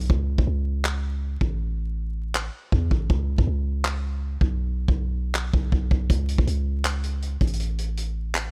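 Melancholic and menacing, this short cut from a longer hip hop and trap piece moves at 160 BPM with a half-time feel, tuned slightly low to A4 = 439 Hz. A deep, boomy 808-style bass with a sine body, a noise layer and a fast, decaying attack sits up front beside a vintage acoustic drum kit of handclaps, hi-hat and a tight kick, its natural studio-room tone rolled off at the top. The hi-hats stay muted from 0.1 to 6.1 seconds, and the dry mix carries a layer of vinyl crackle.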